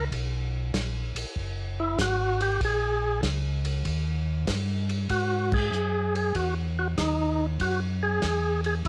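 Recorded at home on cassette with a light reverb, this soulful, bluesy soul jazz organ trio swings in 4/4: a full, percussive tonewheel organ with key click and slow rotary speaker carries the melody as a solo until 5.1 seconds, a round, dark tonewheel organ plays the bass through chorus vibrato and its own slow rotary, and an acoustic drum kit with dark cymbals, a tight kick and a rolled-off top pumps in a small booth, the band striking an accent at 5.4 seconds.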